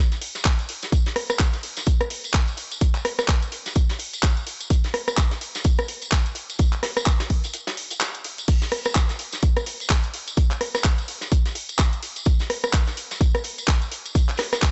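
A house drum kit of crash, handclaps, hi-hat and rim click opens this uplifting, feel-good 127 BPM house excerpt at 0.1 s, together with a dark, brushed acoustic kit with filtered hats and snare and a saturated tambourine tucked in the background. A punchy, layered electronic kick arrives up front at 0.5 s and drives the swung 4/4 groove, which pauses for a brief break at 7.5 seconds. The gritty, cassette-toned sound sits in studio reverb with a dulled top end.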